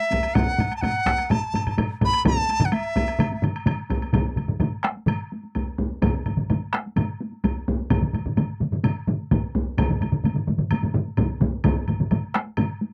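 Dry and close in a 1970s studio manner, this driving, ceremonial Japanese taiko excerpt at 128 BPM in 4/4 opens with a bright, buzzing bamboo dizi playing an expressive, tongued melody with vibrato up front until 3.4 seconds, while hard-stick and heavy-stick taiko ensembles, a vintage, band-limited solo taiko, and a woody woodblock pound on, one ensemble compressed and saturated and another set in the background.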